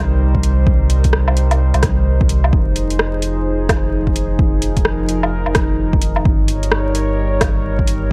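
A dry, close sound sits under a layer of vinyl crackle in this short, nocturnal future garage fragment, its swung sixteenth-note feel giving the groove a ghostly sway. A warbling, lo-fi pad of detuned sawtooth and triangle tones holds sustained chords with a slow attack and long release, bathed in chorus and its own reverb while sidechain pumping makes it breathe against the beat. Beneath it, a round, sine-based sub bass sits up front, deep and mellow with a fast attack. An overdriven, punchy electronic kick carries the pulse, joined by a layered deep house kit whose metallic hi-hats, rim clicks and woodblock sit forward in the mix with their own gritty overdrive. The nostalgic harmony moves from Cm7 to Fm7 at 2.5 seconds and settles on Eb7/G at 6.2 seconds.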